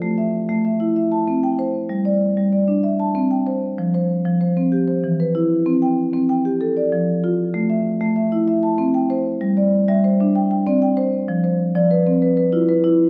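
Southern African traditional music in a straight 12/8 at 128 BPM, this hypnotic, rippling solo marimba played with soft mallets sounds mellow, round and dark, spanning E3 to A5 and sitting up front in a wet recital-hall reverb heard from further back in the room, moving from its opening section into a new one at 9.4 seconds before this cut from a longer piece ends at 13.1 seconds.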